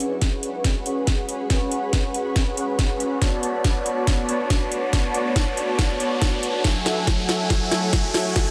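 A shimmering, ethereal pad in the background, a soft supersaw riff up front and a trap kit with a sharp snare and metallic hats all sound from the start of this lush, emotional future bass excerpt. It runs at 140 BPM in 4/4 with a half-time feel, 56% swing on the 16ths and tuning set to A4 = 436 Hz. The whole passage is a build-up, with a drum fill and a filter sweep on the supersaw running throughout. A riser enters at 0.1 seconds, and a layered, knocking electronic kick joins at 0.2 seconds. The supersaw is airy, detuned and mellow, with a noise layer, a moving notch, low-pass filtering, tape echo and sidechain pumping. The granular sine pad carries an octave-up shimmer, chorus and reverb over chords moving from C#7sus4 to Bm7 to F#m7, while both drum parts are overdriven and re-recorded in a small room, all under a light reverb.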